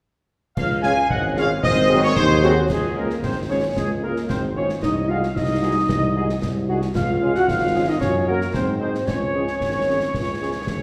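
Rousing and proud, this short cut from a longer military-style march for wind band moves at 113 BPM in a straight 2/4, set in Db major. A clear trumpet section carries the melody, heard from a distance in a roomy space, while a clear woodwind section, a hollow, airy flute section with soft attack and vibrato, and a solo euphonium with light vibrato weave second lines alongside it. A mellow solo tuba anchors the bass, and a dark French horn section sits in the background with accompaniment. A very quiet trombone section adds soft sustained chords only from 0.8 to 2.5 seconds, and a short opening passage gives way at 2.7 seconds to a longer second section. Clash cymbals with a dusky tone, concert bass drum and concert snare drum drive the beat from a live room, and the whole band is heard from further back in a wet scoring-stage reverb.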